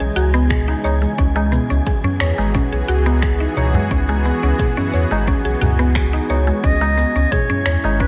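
This mystical, earthy organic downtempo excerpt opens on a single lingering C#m11 chord: a tense, string-like sawtooth drone with vibrato and built-in reverb, a woody FM mallet pluck spinning chorused, tape-worn arpeggios through delay, a round sine sub bass up front, and an electronic kit of finger snaps, shaker and toms, with sidechain pumping on the drone and bass. High-tuned ringing tabla joins at 0.2 seconds and a deep, overdriven layered kick at 0.5 seconds, while an airy, wind-like noise texture hovers in the background. At 6.6 seconds a breathy, intimate jazz-style clarinet steps forward for a vintage-toned solo with scooped notes and delay.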